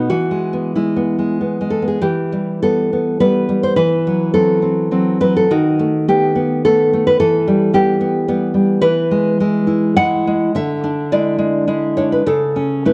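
A fingerpicked nylon-string guitar carries this romantic solo classical piece alone, sitting up front with a warm, full-bodied, deep acoustic tone across a range from C#3 to F#5. The mood is sunny and warm, moving in 3/4 at 91-111 BPM with a rubato feel in E minor. After a brief opening on an E chord, a new passage begins at 2.0 s, moving through Em, F#m7b5/E and B7/D# before returning to Em, then turning to E, E7/D and finally A/C# at 12.2 s. A moderate recital hall reverb gives the guitar a sense of space, while the worn, warbling character of old cassette tape adds a warbly pitch drift to the sound. This excerpt is cut from a longer piece and runs to 12.9 s.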